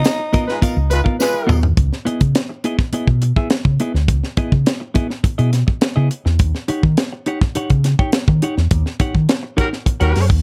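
A sly, funky 104 BPM excerpt opens on a band accent over C#13, with a raspy, growling tenor saxophone phrase in plate reverb, a jingly tambourine in the background and a dark, round, punchy fingered bass up front, as a tight, dry funk kit with a high-tuned snare, clean, twangy, compressed guitar and a smooth-topped horn section with light vibrato join, the horns sounding at 0.5 s and again at 9.6 s, while a drum fill at 1.2 s leads into a C#m9 groove that moves to D#7#9 in a dry room.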